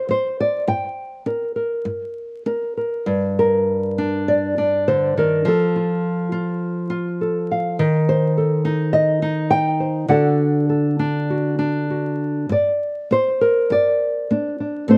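Folk piece for solo fingerstyle nylon-string guitar at 102 BPM in 4/4, played with a loose rubato feel in G harmonic minor, settling into G minor after 3.1 seconds, with an intimate, haunting mood. The thumb-plucked guitar sits small and up front, its warm tone touched by a slapback echo, moving from D7 and Gm through F, Adim/Eb and D before returning to Gm at 12.5 seconds. Recorded outdoors with little reverb and a layer of vinyl crackle, this excerpt is cut from a longer piece.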